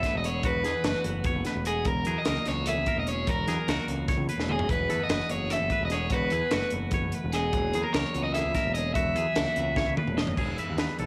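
Math rock with a midwest emo lilt, this bright, playful excerpt runs at 296 BPM in 7/8, with an up-front overdriven electric guitar carrying the melody until 9.9 seconds over twangy, clean picked arpeggios and a hollow-body semi-hollow guitar sitting in the background. A growling, overdriven picked bass and a crisp fusion kit with a high-tuned snare and punchy kick drive the chords through B7sus4/E and F#9/E, with drum fills at 4.4 and 9.8 seconds before landing on Emaj7. The home cassette recording gives the guitars a tape grain, set in a small room with light reverb and a pumping room sound on the drums.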